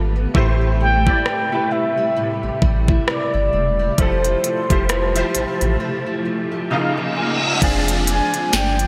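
A knocking, overdriven trap drum kit with a sharp snare and crisp hats sits up front from 0.3 s, anchoring this romantic, dreamy contemporary R&B excerpt alongside a round sine sub bass, while a clear baby grand piano with audible action noise, fingerpicked nylon-string guitar arpeggios and a cloudy granular pad in the background fill out chords moving from Am7 through Fmaj9 and Db69 to Fm6. A mellow, horn-like synth lead with vintage warble and vibrato carries the melody from 0.8 s, a piano fill and an electronic downlifter with reverse cymbal arrive at 6.3 s, and a delicate, bell-like celesta appears very quietly at 7.6 s. The bright 1980s-style digital production is bathed in a lush hall reverb.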